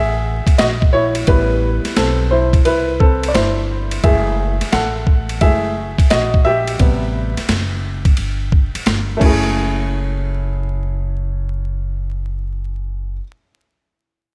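A swung sixteenth-note groove at 87 BPM in 4/4 sets a nocturnal, cool jazz-hop mood in this hip hop fragment cut from a longer piece. A gritty, compressed, pitched-down boom bap sampler kit enters at 0.5 seconds with a thumpy kick, high-tuned snare, hi-hat, ride and crash, then drops out at 9.4 seconds. Underneath, a woody pizzicato upright bass with steel strings holds the low end throughout. The smooth, vintage-toned upright piano, with its short sustain, takes the lead over the first 9.5 seconds, voicing a rootless F#m9 that alternates with Am9. A light studio reverb and a bed of vinyl crackle surround the up-front sound, and the piano and bass carry on alone until the end at 13.2 seconds.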